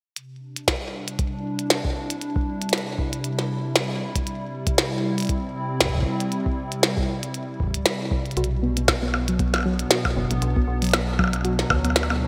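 IDM at 117 BPM with a light swing on the sixteenths, cerebral and glitchy, this excerpt opens on a hollow, flute-like pad holding chorused chords over a clicky, up-front drum kit of tiny snare, hi-hat and percussion blips treated with gated reverb and delay, with a deep, tape-warm electronic kick underneath. At 8.4 seconds the harmony moves from Cadd9 to Bm as a round, full-bodied pluck enters with chorused arpeggios through digital delay, joined by a dark, metallic FM bass with a fast attack and decaying notes. The bright 1980s-style digital production sits in a lush hall reverb.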